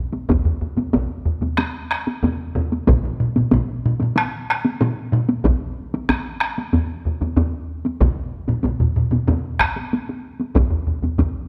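Close, detailed microphones in a moderate stage reverb capture this driving, powerful fragment of a Japanese traditional taiko drum piece, moving at 94 BPM in a straight 4/4. Four taiko ensemble parts sit up front: two struck with hard sticks, one close and dry and the other in a small room, and two with heavy sticks, one in a small room and one close and dry. Three of the parts play from the opening moments through 11.3 seconds, while the close, dry heavy-stick part joins at 2.9 seconds and drops out at 9.8 seconds.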